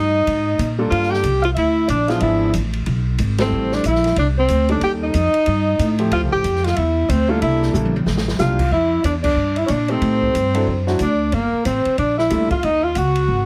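Small-group swing and bop jazz in F major, this playful, warm excerpt from a longer piece moves at 185 BPM in 4/4 with a lilting swing on the eighth notes. A breathy tenor saxophone carries the melody up front, its scooped notes and light vibrato smooth at the top, while a mellow alto saxophone traces a second line higher up, sitting further back in the mix. A woody, thumpy upright bass is plucked close and dark, with the grand piano adding warm accompaniment with deep bass, and an open drum kit with dark cymbals and a boomy kick sounds natural in a small room. The harmony roams through rich extended chords such as Gm9, E7b9 and Eb7#11, and the band hits accents together at 3.4 and 9.2 seconds, with a drum fill from 7.7 to 8.4 seconds shortly before the second section begins at 8.7 seconds. A moderate club reverb frames the group, but heavy multiband compression gives the whole a squeezed, radio-like sound.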